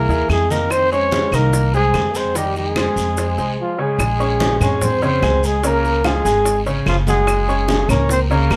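A breathy, whispered trumpet with vibrato leads up front over a clear trombone second line in the background, a brilliant upright piano with audible action noise and an up-front, thumpy gut-string bass plucked pizzicato, as low-tuned congas struck with hard hands, soft-handed, saturated bongos, grainy maracas, woody vintage claves and a raspy, distant guiro join in this sultry, sophisticated Afro-Cuban jazz at 146 BPM, moving from F minor into Bb minor at 4.0 seconds under light reverb.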